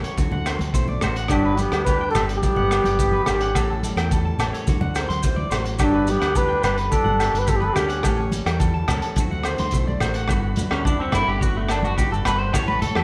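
Warm and sunny, this highlife guitar band groove moves at 107 BPM in a straight 4/4 in G major, cut from a longer piece. Up front, a crunchy breakbeat drum kit with a punchy kick, hi-hat and rim click sounds saturated and gritty with a rolled-off top, while a round, dark fingered electric bass sits beneath it. A twangy, slightly broken-up electric guitar plays picked arpeggios over a clean, compressed semi-hollow guitar in the background, and bright congas, ringing agogo bells and grainy maracas add light percussion behind them. From 1.3 s to 8.3 s, a veiled trumpet with a bucket mute carries the melody in a close, jazz-style voice with light vibrato, backed by a vintage-toned second trumpet with scooped notes. At 10.3 s the chords settle on Gmaj7 as a clean electric guitar solo arrives and a reedy combo organ holds sustained chords with heavy vibrato. The band plays live together in one room, bathed in a wet stone reverb.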